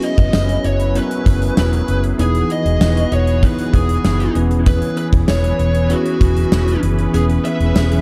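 A fuzz-drenched lead guitar carries the melody from the first beat of this romantic, uplifting 1980s-style pop excerpt, its picked, compressed tone sitting over a bell-like tine electric piano and a bright, airy pad of detuned sawtooth chords with a slow attack and long release. A gated drum kit drives a straight 97 BPM in 4/4, with a fat snare, tight kick and hi-hat sounding big and polished up front. Just after the start, at 0.2 seconds, a vintage fingered electric bass enters, foam-muted, round and amped, holding a low register, while a very quiet, jingly tambourine sits close and dry in the mix. The harmony moves from F#7sus4 to Emaj7 to C#m7/E, and the band hits an accent from 7.1 seconds, where mellow, brassy synth stabs with chorus and vibrato appear briefly in the background at 7.9 seconds. The production is dark and warm, with light reverb and a small-room ambience.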